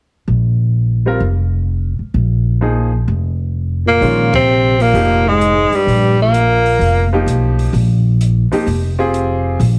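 A growly, woody upright bass opens this searching, spiritual modal jazz excerpt at 0.3 s, swinging at 129 BPM in 4/4, and a clear, vintage grand piano with short sustain joins at 1.1 s. From 3.9 s a distant, lightly vibratoed tenor saxophone carries the melody over a dark, punchy, close-miked trombone line. Just after, a quiet drum kit with dark cymbals and a boomy kick slips in around a band accent, heard through light reverb and a heavily compressed radio sound.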